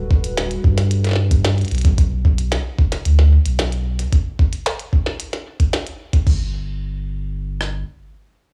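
IDM at 112 BPM in G major, this short cut from a longer piece feels playful and wistful. It opens on a hollow, flute-like pad holding a Gmaj9 chord, its dark, detuned tone softened by chorus and roughened by vintage 12-bit sampler grit, with a filter sweep running over it until it stops at 2.0 seconds. Beneath it, a round sine sub bass sits deep and up front, sustaining through nearly the whole passage. A compressed, pitched-up jungle sampler-style kit drives the groove with a thumpy kick and rim click, re-recorded in a small room for extra grit. A second, glitchy electronic kit adds clicky hats, a tiny snare and crash cymbal through analog delay, dropping out at 6.4 seconds as the music moves into a new section. The overall sound is dry and gritty, with a cassette-tape, hardware character and only a small room's reverb.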